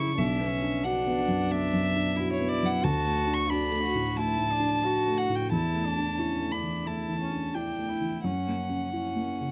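A floating violin carries the melody in this reflective neoclassical fragment, played sul tasto by a single player with an airy bow and a pure tone that sits up front. Beneath it, a lone cello adds a clear, nasal second line, also bowed sul tasto with a soft attack. A felt-muted upright piano supplies the accompaniment, its mellow, slightly vintage tone shaped by thick felt and placed intimately up front. The rubato feel lends the music a fragile quality as the harmony moves from Bm through D and Asus4/E to F#7. Recorded with close, detailed microphones and little reverb, the passage is cut from a longer piece, with all three parts playing together from 0.0 to 9.5 seconds.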